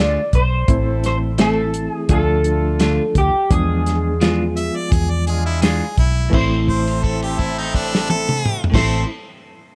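A smoky, soulful room sound opens this short cut from a longer piece, with studio reverb around a dry, dark drum kit and a round, foam-muted electric bass. It is a straight-eighth soul blues at 85 BPM in 4/4, set in A harmonic minor and moving through Dm, Am and E7b9 before landing back on Am. An electric guitar through a small old amp carries the melody with a slightly broken-up, lo-fi tone and analog chorus, while a twangy, clean second guitar adds picked stabs. A reedy electric piano with fast tremolo fills out the accompaniment, and a loose horn section, doubled in octaves, holds sustained chords in the background. At 4.6 seconds a bright harmonica enters with a second line, its scooped notes and light vibrato giving a pop-style edge, and from 6.3 seconds a held note stretches across the closing passage.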